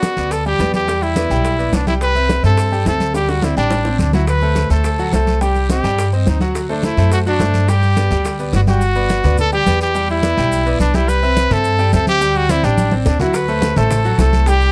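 A clear trumpet with light vibrato carries the sunny, festive melody up front in this fast salsa cut at 212 BPM in G major, joined from 0.2 s by a woody, dark pizzicato upright bass, while a brilliant grand piano with audible action noise comps over Gmaj7, Em7, C6 and D7 changes and background congas, raspy guiro, grainy maracas and tight, high-tuned bongos, which drop out at 8.8 s and return at 13.3 s, fill the percussion under light reverb.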